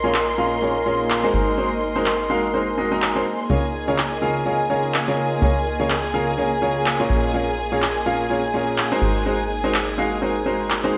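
A clear, woody upright piano riff with delay leads this feel-good, euphoric piano house clip at 125 BPM in Db major, backed by dark, bowed chamber strings holding sustained chords, a punchy, funky analog bass, a cloudy granular pad drifting in the background and electronic handclaps from 0.1 seconds, all set in a dreamy mix soaked in plate reverb as the chords move from Bbm7 through Ab9 to Db6.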